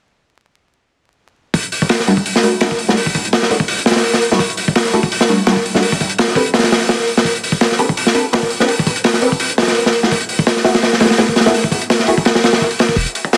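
A swung, crunchy jungle breakbeat starts at 1.5 seconds in this raw, dark drum and bass passage cut from a longer piece, its gritty acoustic kit of tight kick, medium-tuned snare and hi-hat sitting up front with a saturated, rolled-off top. Nasal, band-passed chord stabs with detuned, wave-folded edges arrive at 2.1 seconds, colored by phaser, ensemble chorus and dub echo as the harmony moves through minor eleventh chords. A round, deep dub sub bass note surfaces briefly at 13.0 seconds, and the dense, heavily limited master carries plate reverb and vinyl crackle.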